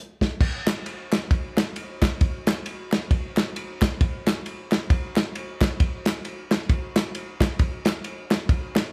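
A dry, muffled soul drum kit opens this short gospel excerpt, with a tight kick, medium-tuned snare, hi-hat, and dark ride and crash cymbals sitting up front in a lo-fi, rolled-off sound and a swung 4/4 feel. At 0.7 seconds a crisp group handclap joins, human and close, set lower in the mix. The mood is soulful and solemn, like a band playing live together in one room with a light reverb.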